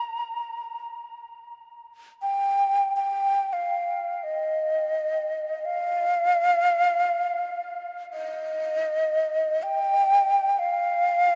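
Unfolding in free time, this spacious, peaceful world meditation piece is a short cut from a longer work, featuring a solo xiao that is breathy, bright and bamboo-toned, with vibrato, a crisp attack and close-miked presence, placed up front and trailed by a diffuse ambient delay inside a huge, wet reverb of about 6.4 seconds within a dark, warm production.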